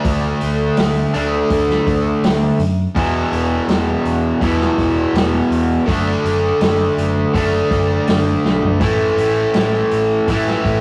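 A straight four-four groove drives this gritty, swaggering blues rock power trio excerpt with a southern rock edge, as a bright, overdriven, double-tracked cranked stack guitar sits up front picking a riff over D5, E5, D/F# and A5, a fingered electric bass growls underneath, and a muffled, lo-fi vintage drum kit with a tight kick and medium-tuned snare drops a fill at 8.4 seconds, captured as a rough rehearsal-room recording with warm saturation and moderate stone room reverb.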